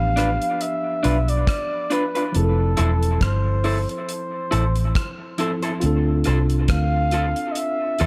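A breathy flugelhorn opens this short cut from a longer lovers rock reggae piece, carrying the melody up front with mellow vibrato and a smooth, jazz-style top, trailed by dub echo. From the first moment, a worn tine electric piano, slightly out of tune and lightly overdriven through its built-in speakers, supplies the accompaniment, while a dark, round, foam-muted electric bass sits forward in the mix. At 0.2 seconds an electric guitar through a small old amp adds picked stabs, its tone slightly broken-up, compressed and lo-fi, also sent into dub echo. A damped 70s drum kit enters at the same moment, dry and acoustic, with a tight kick, hi-hat and rim click under gated reverb. The harmony moves from G7 to Fmaj7 to Dm7 over a swung sixteenth feel, and light reverb with studio ambience frames the sweet, romantic mood.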